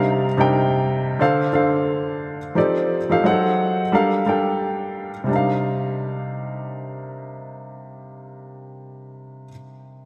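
Late-night and smooth, this short R&B fragment cut from a longer piece moves at 88 BPM in C dorian with a gently swung sixteenth-note feel, carried by a single upright piano playing accompaniment throughout. The piano sits up front with a woody, intimate tone and audible action noise, its chords moving from Cm11 through Dm7, F13, F#dim7 and Gm7 before returning to Cm11 at 5.3 seconds as the second section begins. A lush, wet hall reverb and a bright 1980s-style digital production sheen surround the playing.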